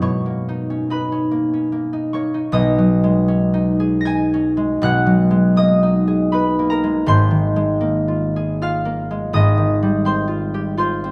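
A bright, ringing concert harp, fingerpicked and up front, plays alone across a range from G#1 to A#6 in this serene, peaceful classical cut from a longer solo piece. It moves with a rubato feel in 3/4 through lush chords from Bmaj9 to Fm9/Ab, shifting into a new section at 2.5 seconds, all set in a moderate recital hall reverb.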